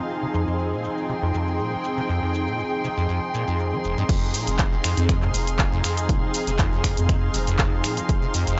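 A straight 4/4 acid house groove at 120 BPM in F minor drives this trippy excerpt, where a squelchy, resonant sawtooth acid bass riff undergoes a filter sweep over a detuned unison pad holding an Fm7 chord, a veiled, con sordino string section and a tape-warm analog drum machine of hi-hat, shaker, handclaps, finger snaps and crash, until the drop at 4.1 s brings in a punchy, up-front kick and a deep, round analog bass, all heard in a dry, gritty hardware recording with pumping sidechain on the pad, strings and basses.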